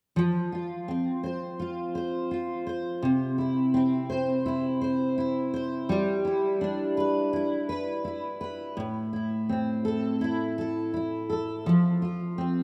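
Easy-going and carefree, this pop excerpt moves at 84 BPM in 4/4 with a gentle swing on the sixteenths. A picked steel-string acoustic guitar carries the accompaniment from 0.2 to 12.6 seconds, its warm, full-bodied jumbo tone sitting up front and double-tracked for extra depth. The part spans A2 to C5, cycling through F5, C, G6, Am and back to F. A lush, wet hall reverb with a long tail surrounds the guitar and gives the room a spacious glow. The rough home-demo mix keeps the sound informal and unpolished, fitting the relaxed, carefree character of the piece.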